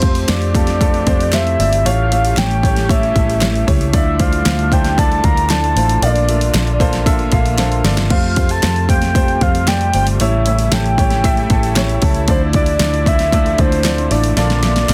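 A punchy pop drum kit drives this straight 4/4 groove from the start, its up-front kick and fat snare joined by hi-hat and crash, with short fills around 7.6 and 14.4 seconds, while a crisp group handclap sits very quietly beneath from 0.3 seconds. This anthemic, hopeful piano-driven pop passage is cut from a longer piece, with a round, foam-muted vintage electric bass anchoring the low end and a dark, woody upright piano carrying the accompaniment. Over them, a soft octave-layered synth lead sings the melody with a detuned, sub-octave tone, vibrato and a chorus effect. A smooth, bowed studio string section holds sustained chords in the background, adding a rich ensemble sheen. The harmony cycles twice through Fadd9, A7, Dmadd9 and Bbmaj7, and the dry, dense, heavily limited modern master keeps every part close and forceful.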